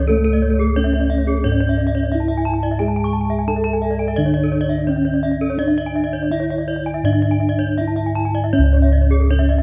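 Bronze metallophones and bossed gongs ring out from the opening of this shimmering, brilliant Balinese gamelan passage in C# pelog at 79-88 BPM, where a mellow, padded-mallet metallophone carries the melody with paired-tuning beats and a vintage, band-limited tone, a soft, airy one plays accompaniment in the background until 8.5 s, two bright horn-mallet metallophones spin high arpeggios, and round, dry, full gongs sit up front as the bass, all captured with close, detailed microphones in light reverb as the music moves into a new section at 8.5 s.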